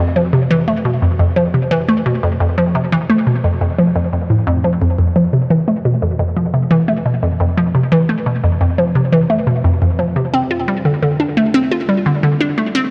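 Ambient music with a mysterious, hypnotic mood, heard in a short excerpt cut from a longer piece in a straight 4/4 feel. A single hollow square-wave pluck carries the whole 12.9 seconds alone, moving between F2 and F4 with a fast attack and short decay that give each note a bouncy, nasal character. Its detuned tone carries a layer of noise, a moving notch and chorus, while cassette tape colouring and tape echo add a worn, smeared edge. The pluck sits up front, yet it is bathed in a huge, wet reverb with a 7.3-second tail that turns the space around it cavernous and drifting.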